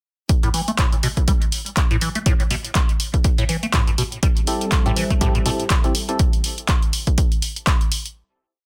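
A squelchy, resonant acid bass drives this short, hypnotic acid house piece at 122 BPM in A minor, its phased, tape-echoed 12-step line drifting against the bar over an up-front, punchy four-on-the-floor kick and a tape-warm drum machine's swung hi-hats and handclap backbeat, while a lush, detuned unison pad pumps in from 4.2 seconds and a hollow, organ-like stab adds dotted-rhythm chords in one parallel shape from 4.5 seconds, all set in a light reverb and a dense, heavily limited modern master.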